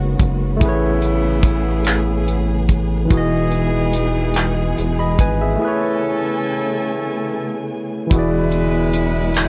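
A barky, up-front tine electric piano opens this slow, yearning and sultry six-eight R&B excerpt over a rubbery square-wave bass, lush, distant bowed string chords and soft-attack horn stabs, with a dry, damped 70s drum kit of kick, hi-hat and handclaps entering at 0.2 seconds and a break arriving at 5.6 seconds, all heard in a small room through the worn, warbly pitch drift of old cassette tape.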